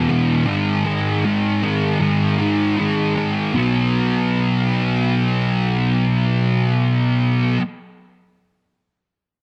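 This rock passage, cut from a longer piece, carries a wistful yet blissful mood in a straight 4/4 feel. A thick, fuzz-drenched electric guitar plays alone from 0.0 to 7.6 seconds, picked and double-tracked, sitting up front in the mix with distortion and an analog chorus coloring its low-to-middle register. The harmony moves from G#5 near the start to B5 at 3.6 seconds, where the music shifts into a second section. A light reverb and digital ambience give the guitar a sense of space. The master is dense and heavily limited, with a modern sheen.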